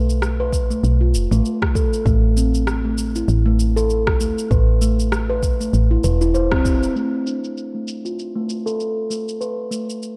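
Organic downtempo at 98 BPM in 4/4, with a lightly swung sixteenth-note feel and a mystical, hypnotic mood, cut from a longer piece. A steel tongue drum carries the arpeggios, its round, pure, ringing tone struck with soft rubber mallets and sitting up front, mellow and meditative through a low-pass filter and digital delay. Beneath it, a woody FM bass with a fast attack and decaying, dark body pumps against a deep, tape-warm electronic kick. An electronic shaker and rim click, both low-pass filtered, add a produced pulse. The harmony moves from a tense opening chord to A minor; the band hits an accent at 6.5 s, and the bass and kick drop out by 6.9 s. From 7.0 s, over a rootless B minor seventh, filter sweeps run across the percussion and the tongue drum in a dark, warm production with light reverb.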